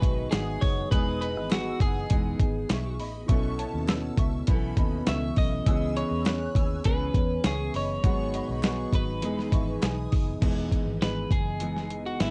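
A lo-fi home cassette sound with light reverb and a dulled top end frames this nostalgic, sunny bedroom-pop snippet, anchored by an up-front, gritty sampler-style soul drum kit with a thumpy kick and a round, foam-muted fingered electric bass. A clean, compressed electric guitar carries the melody over a full-bodied fingerpicked steel-string acoustic guitar with lush chorus and warbly pitch drift, while a mellow tine electric piano sits in the background. A shimmering FM bell with a dreamy halo of chorus and analog delay traces a high second line until 10.2 seconds, and a very quiet, hollow group handclap runs from 0.3 to 10.0 seconds, over chords moving through G#m7, Emaj7, B9sus4 and C#m7.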